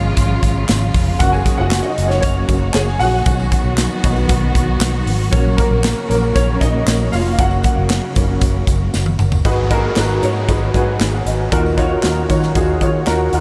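Soaked in a huge, dreamy reverb, this uplifting piano-driven pop excerpt features a woody, up-front upright piano with ensemble chorus soloing over lush, bowed studio strings until the strings stop at 9.4 seconds, while a dark, foam-muted electric bass, a punchy, polished acoustic drum kit with handclaps and toms, and a very quiet, jingly tambourine carry on as a background electronic downlifter enters at 9.5 seconds.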